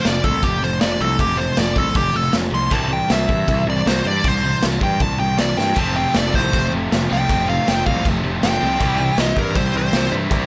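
Energetic and rowdy, this punk rock clip opens with a nasal lead guitar through a parked wah soloing up front over a gritty, punchy garage drum kit with dark cymbals and a pumping small-room sound. Underneath, a growly fuzz bass and two bright riffing guitars drive the F and C changes, one a cranked stack sitting in the background and the other a distorted, compressed part kept very quiet. A drum fill at 5.6 seconds ushers in a biting, double-tracked overdriven guitar riff at 5.7 seconds, all beneath a light reverb.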